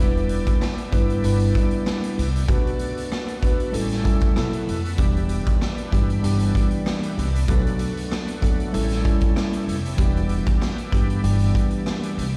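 Reflective and moody, this boom-bap hip-hop excerpt rides a lightly swung groove, with a raw garage drum kit of hi-hat, boomy kick, rim click and medium-tuned snare sounding gritty and saturated up front in a bright, pumping stone room, joined at 0.2 seconds over a woody, growly pizzicato upright bass. A mellow, clean tine electric piano carries the accompaniment through cassette-tape coloring, while a bright tonewheel organ holds shouting, lightly overdriven chords with key click, chorus vibrato and a slow rotary speaker, set back in the mix. Chords cycle from Em7 through G6, Bm7 and A7, briefly touching B7sus4, and the whole track sounds played on a big system in a bare room, with light reverb and vinyl crackle.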